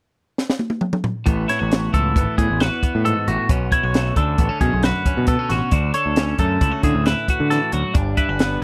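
Bright and playful, this short math rock and midwest emo excerpt moves in 5/4 at 135 BPM in A major, opening with a compact cocktail drum kit whose high-tuned snare and punchy kick roll through a fill from 0.4 seconds. At 1.3 seconds a bright twelve-string electric guitar picks the accompaniment over an Amaj9, Bm9, Dmaj7 and Gmaj7 progression, joined by a growling picked bass with overdrive and, from 1.5 seconds, a twangy guitar playing phaser-tinted arpeggios. The sound is dry and close, with a small-room, 1970s studio feel that keeps every part up front.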